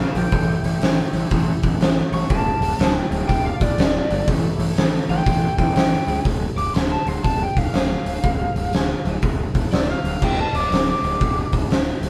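A dark, overdriven lead guitar solos from the first moment of this gritty, heavy blues rock and southern rock fragment, over a growly fuzz bass, a very quiet tonewheel organ holding thick chords through a slow rotary speaker with key click, and an oversized, low-tuned, saturated drum kit with a fat snare and punchy kick sitting up front. The swung groove moves between A7 and Dm, and the organ drops away at 6.2 seconds while guitar, bass and drums carry on to 12.1 seconds. It sounds like a power trio playing live in one room, with light reverb and a bright stone-room tone on the kit.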